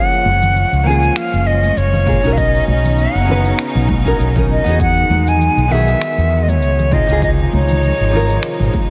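An airy, softly attacked concert flute carries the melody with delay from the first moment of this smooth, sunny sunset chillout excerpt, joined at once by a woody, fingerpicked nylon-string guitar with tape echo and a rich, bowed studio string section holding sustained chords through F#maj9, Bmaj9, Emaj9 and C#maj9, while a produced deep house kit of cabasa, finger snaps and toms, an amped fretless bass up front, soft-handed congas in the background and a punchy electronic kick arriving at 2.1 s fill out the gently swung 4/4 groove in light small-room reverb.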